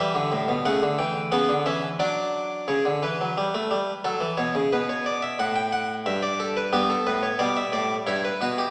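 In a steady triple metre at 89 BPM with a straight feel, this short cut from a longer classical piece unfolds as a baroque-style three-part fugue for solo harpsichord, stately and elegant in mood. The harpsichord, a French-style instrument on one set of strings, sounds airy, bright and plucked, placed up front and spanning G2 to G5 across the whole 8.7 seconds. Harmonies move from Em7 through A/C# and D/F#, and after a shift at 2.7 seconds onto a C#(b5, no3) chord the second part passes through F#m7, B5 and Em7/G before settling on C#m7b5/G. A wet scoring-stage reverb with a 1.5-second decay surrounds the instrument, lending it a spacious bloom.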